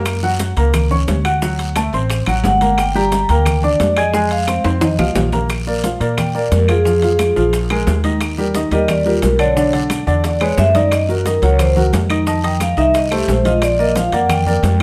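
With light reverb, this recording places the piano and upright bass up front while most of the hand percussion sits in the background. It is a sunny, danceable Afro-Cuban jazz excerpt at 177 BPM in a straight 4/4, settling into Bb major from 5.5 s. A baby grand piano with an intimate, natural tone, short sustain and audible action noise accompanies from the start, over a growly pizzicato upright bass with steel strings and a woody bite. Bright, high-tuned congas played with hard hands, tight, saturated bongos with soft hands, ringing metal-shell timbales, claves in a live room, a raspy guiro and grainy, mellow maracas fill out the groove, with drum fills arriving just before 5.5 s and again at 10.2 s. The vibraphone, played with medium mallets and its motor off, enters at 2.5 s with a metallic tone and plate reverb, then takes a solo from 5.5 s over chords such as Ebmaj7, E9 and Gb6 until the cut ends.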